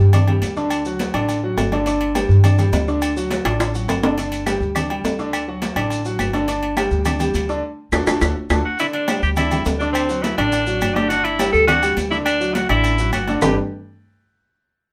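Recorded live in one room with moderate studio ambience, this joyful, danceable salsa passage, cut from a longer piece, rests on a clear, up-front concert grand piano and a dark, thumpy pizzicato upright bass with gut strings, alternating between G5 and D chords. Ringing, close and dry agogo bells and timbales, high-tuned vintage congas and grainy, mellow maracas keep the groove busy, while woody claves join in the background at 4.5 seconds after a drum fill. As a band accent closes, a tenor saxophone enters up front at 8.7 seconds with a pop-style solo of scooped notes as a D7 chord passes by.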